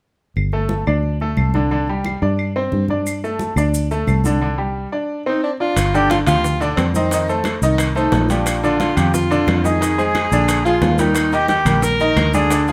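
A clear tenor saxophone with vibrato carries the solo melody from 5.3 seconds in this passionate, danceable salsa excerpt in G minor at 178 BPM, sounding roomy yet up front. A bright grand piano with audible action noise and short sustain plays the accompaniment over a dark, foam-muted fingered electric bass, while congas and compressed woody claves sit in the background and grainy maracas arrive later. After a break at 4.4 seconds, ringing metal-shell timbales and very quiet, low-tuned bongos join at 5.8 seconds as the harmony moves from Gsus2 and Csus2 through F7, Bb6 and Ebmaj7 under moderate studio reverb.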